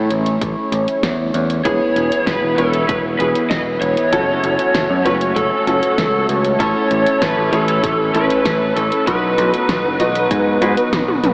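An overdriven, lo-fi lead guitar carries the melody up front from 1.6 s in this dreamy, romantic synthwave fragment, joined by clear, worn baby grand piano stabs trailing diffuse ambient delay, over a shimmering, dark pulse-width pad pumping in the background, a growly picked electric bass, a pop drum kit with fat snare and metallic hats, and a punchy electronic kick. The mix is soaked in huge reverb with an AM radio tint, and a drum fill arrives at 10.9 s.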